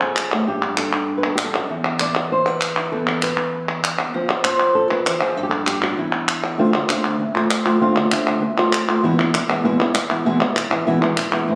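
Captured on a phone inside a stone room, this short excerpt carries a moderate, club-like reverb that gives the sound a live, roomy edge. It is a dramatic, intense flamenco piece in E phrygian dominant, moving at a brisk 196 BPM in a straight 4/4. A dark, thumb-plucked flamenco guitar carries the melody up front, ranging from E2 to D5 across the whole clip. Crisp, close palmas hand claps sit up front alongside it as percussion, playing throughout. The harmony passes through Gsus2, E and F5, drops into a chordless passage at 5.4 seconds, then turns to Dm7 at 6.6 seconds before settling back on E.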